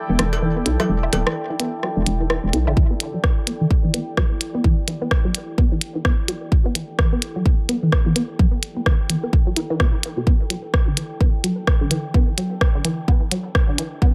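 Hypnotic and quirky, this minimal techno excerpt in E minor moves at 128 BPM with a swung 16th feel, as a deep, moody ambient pad with chorus and reverb pumps under a squelchy, resonant blip pluck riff drenched in phaser and tape echo, while a hollow, bouncy FM bass and overdriven rim click, cowbell and woodblock percussion sit beside a clicky, tape-tinged hi-hat and rim kit until a punchy, up-front electronic kick enters at 2.8 seconds and a filter sweep on the arpeggiated synth drives a build-up through the rest of this echo-heavy mix.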